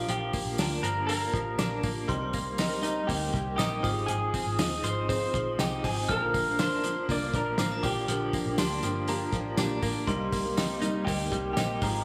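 A slightly broken-up electric guitar melody through a small old amp opens this youthful, breezy excerpt of jangly indie pop at 120 BPM, joined at once by a ringing, bell-like glockenspiel line, detuned sawtooth analog keys with chorus, twangy tremolo arpeggios on a clean direct-recorded electric guitar and a round, foam-muted vintage bass, while a dark, cloth-damped drum kit with a fat snare sits up front, a jingly tambourine stays in the background, a fingerpicked steel-string acoustic guitar enters at 6.1 seconds, slapback echo touches the guitars, keys and glockenspiel, and a lush hall reverb gives it a big arena sound.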